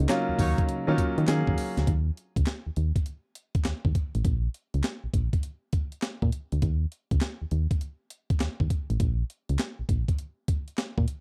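A mellow, distant brass ensemble holds a soft chord over a punchy, round FM bass as this bouncy new jack swing R&B fragment opens, joined by a polished grand piano and a tight, jazz-style horn section whose brief stabs carry a slapback echo in the background. By 1.9 seconds the brass, piano and horns have dropped away, leaving the dark, fast-attack bass and a gritty, compressed breakbeat sampler-style kit of thumpy kick, medium-tuned snare, hi-hat, handclaps and tambourine up front. The swung sixteenths drive things to the close at 11.2 seconds, captured in a dry, close, 1970s-style studio sound.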